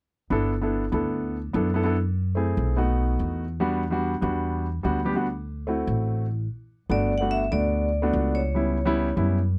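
This short excerpt from a longer Afro-Cuban jazz piece opens at 0.3 seconds with a grand piano and upright bass together, setting a sunny, sophisticated mood in G major at a brisk 146 BPM in straight 4/4. The piano comps up front with a warm, short-sustained tone in its middle register, while the pizzicato upright bass, woody and thumpy with the dark character of gut strings, sits close and prominent beneath it. The harmony moves from G6 through F#m7b5, B7, Em7 and D7 before a break around 6.1 seconds. At 6.9 seconds a new section begins on Gmaj7, and a vibraphone struck with medium hard mallets enters with a short, metallic, ringing melody, colored by a medium motor vibrato and placed a little forward in the mix. The dry, close sound recalls a 1970s studio, with little reverb around the instruments.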